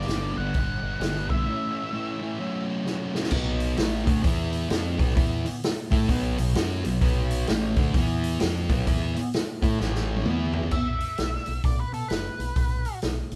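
A gritty, brooding blues rock and southern rock excerpt at 130 BPM in B minor opens with a thick, double-tracked fuzz guitar riff up front, a dark octave-fuzz lead guitar melody, a growling overdriven fingered bass and a punchy vintage drum kit with a rolled-off top, all swinging in 4/4 like a power trio playing live in one room. Drum fills arrive at 2.9 and 9.8 seconds as the riff moves through a Bm and E5 groove. At 10.7 seconds the fuzz riff stops and the dark lead guitar returns for a solo over bass and drums in a moderate studio reverb.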